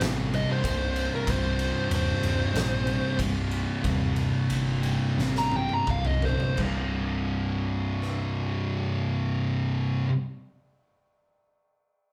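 A straight 4/4 groove drags steadily slower from early on, giving this sludgy, hypnotic stoner and doom metal fragment a heavy, lurching weight. Two thick fuzz guitars grind out the low riff together, one pushed up front with a dark edge and the other sitting warm in the background. A round, hollow-body short-scale bass, picked and amped with overdrive, thickens the bottom. The oversized, low-tuned drum kit adds a punchy kick, a fat snare and shadowy cymbals in a gritty, saturated, pumping room sound, and it rolls into a fill at 5.2 seconds. A distorted fuzz lead guitar solos up front from 0.4 seconds over a C minor chord until the harmony drops to a bare C power chord at 6.6 seconds. The whole band plays together in one room, bathed in a large, wet studio reverb.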